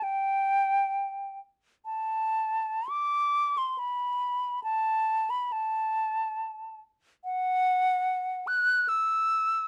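In free time with an expressive feel, this short classical passage cut from a longer piece features a solo concert flute from 0.0 to 9.7 seconds, ranging from F#5 to F#6. The flute's pure, hollow tone is close-miked and up front, with vibrato and tongued notes that give the serene, lyrical line a clear shape. Light reverb and a dark, warm production soften the sound around it.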